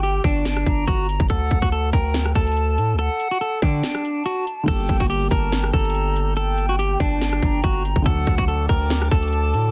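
Eerie and dark, this short excerpt from a longer trap piece moves at 142 BPM in a half-time feel, set in G harmonic minor over a Gmadd9 to D progression. A clean, compressed electric guitar carries the fingered melody up front, its tone rounded by a low-pass filter and trailed by tape echo, while a hollow, airy concert flute with vibrato and a crisp attack traces a higher second line through the same echo. Beneath them, a distorted 808-style bass hits hard and heavy, saturated with a noise layer and a fast attack that decays, and the overdriven trap kit punches up front with a hard-clipped kick, sharp snare, metallic hats, rim clicks and crash, sounding re-recorded in a small room. During a break that begins at 3.8 seconds, a felt-muted upright piano enters in the background at 4.6 seconds, soft and intimate with audible action noise, and a glassy FM pad follows at 5.3 seconds with slow-attack, ethereal sustained chords treated with ensemble chorus and built-in reverb. 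The overall sound is dry and dense, with a heavily limited modern master.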